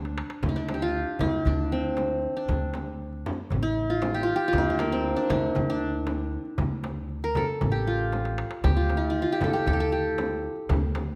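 A moderate recital-hall reverb surrounds this brief, soulful Arabic maqam ensemble passage, cut from a longer piece and set in D maqam bayati at 117 BPM in a straight 4/4. Up front, the qanun carries the longing melody between Bb3 and Bb4, its plectrum-plucked triple strings sounding bright-edged. Beneath it, a pizzicato upright bass with steel strings holds the low end from A1 to D2 in a woody, warm tone. The metal-shell darbuka sits close and dry, crisp under soft hands, while a small frame drum played with hard hands stays in the background, bright, compressed and saturated. A drum fill opens the passage at 0.0 seconds and another arrives at 8.1 seconds, before the ensemble plays on to the end at 11.2 seconds.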